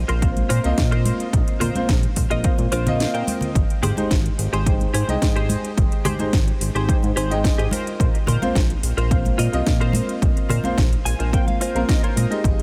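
Groovy and feel-good, this nu-disco excerpt at 108 BPM rides a punchy, overdriven electronic kick up front and a house kit with cracking snare and metallic hats, under a glossy, retro chorused synth bass, a clean, scooped direct electric guitar riff with analog chorus and tape echo that adds fills around 2.4 and 10.8 seconds, a boxy concert grand piano with long sustain, and close, dry congas in the background, with a break at 3.0 seconds, all moving from Bbsus2 to Abmaj7 and back in a light digital ambience.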